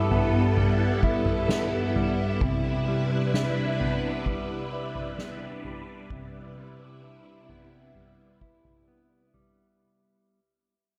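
A straight 4/4 pulse from a soft-mallet drum kit with a boomy kick and natural hall tone carries this floating, blissful dream pop piece, where a swirling vintage string machine, bright with ensemble chorus and phaser, holds slow-attack chords moving from G6 to Cmaj7 beside a dark, clean, fingered electric guitar playing arpeggios through subtle chorus and tape echo, set in an echo-heavy mix with chamber reverb as the passage fades out across its 9.8 seconds.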